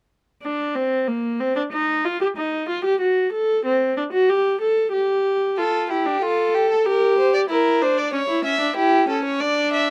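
The viola opens alone at 0.4 seconds, a single bowed player with a reedy gut-string tone and a smooth top, sounding up front in a close, detailed recording with little reverb. This is a classical, baroque-style fugue for string quartet at 93 BPM in 4/4 with a straight feel, and its mood is solemn and driving. The viola carries the accompaniment, moving between Bb3 and A4 before any harmony is defined. At 5.6 seconds a single violin enters as the second line, period-style and bowed, ranging from F4 to E5 with its own reedy, gut-string character, also placed up front. The harmony then passes through Dm, Gm and a rootless A7/C#, and the passage is cut from a longer piece, ending at 9.9 seconds.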